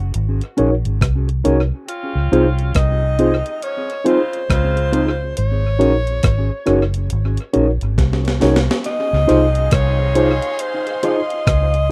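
A slow, swung lovers rock reggae groove at 69 BPM in Db major rides on a gated 80s drum machine with a thumpy kick, a gated-reverb snare, rim click and hi-hat, together with a round, foam-muted electric bass that sits up front, while a mellow tine electric piano and dark, clean electric guitar stabs touched with harmonic tremolo and tape echo fill in the chords. Over this a breathy, close-miked alto saxophone sings a tender, intimate melody with subtone, scooped notes and tape echo, shadowed from 1.9 s by an edgy, vintage saxophone section playing a quiet second line. After a drum fill at 8.0 s, a distant, lush string section of violins enters at 8.9 s on a Dbmaj9 chord, adding a romantic glow to this rough, lightly reverberant home-demo fragment.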